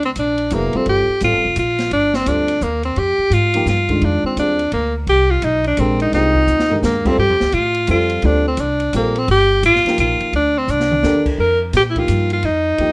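An intense, hypnotic modal jazz excerpt in a swinging triple metre opens with a bright, forceful alto saxophone soloing up front with scooped notes and light vibrato, over woody pizzicato upright bass and a dark, smooth drum kit sitting in the background. A mellow, vintage-toned upright piano joins at 0.5 seconds, accompanying the horn as the harmony moves between minor eleventh and suspended chords. The drums add short fills at 6.5 and 10.7 seconds, and a light reverb gives the small-room sound some air.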